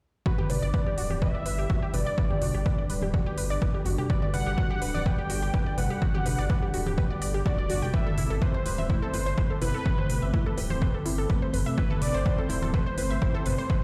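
Progressive house at 125 BPM in G major, this hopeful, expansive excerpt moves from Gmaj7 to Amadd9 at 7.9 seconds, cut from a longer piece. A punchy, overdriven electronic kick and crisp, overdriven hi-hats, re-recorded in a large room, drive the beat, while a deep, saturated sine sub bass sits low and sidechain-pumps beneath them. A thick, bold sawtooth unison lead carries the dark melody with dub echo, and a lush, detuned unison pluck spins decaying arpeggios, also pumping and echoing. In the background a smooth, detuned analog pad holds sustained chords with chorus and sidechain pumping, shaped by a filter sweep, and ringing acoustic congas and bongos add pumped percussion. A very quiet, glassy texture of drifting overtones enters at 1.4 seconds, and a large studio reverb gives the mix the feel of a big sound system in a bare room.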